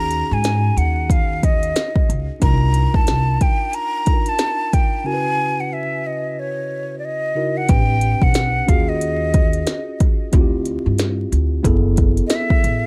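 A swung 4/4 groove at 91 BPM drives this smoky, mellow jazz-hop fragment. An overdriven electronic kit with a deep kick, tiny snare and clicky hats sits up front, carrying a small-room grit. A dark, woody pizzicato upright bass plays beneath it, drops out at 3.3 seconds and returns at 7.7 seconds. A clean, mellow tine electric piano lays down minor seventh and eleventh chords that drift from D#m7 through Am11 to F#m11. Over the top, a breathy, hollow jazz flute carries the melody with gentle vibrato, a soft attack and a tape echo. Light reverb and a bed of vinyl crackle round out the 12.9-second clip's late-night haze.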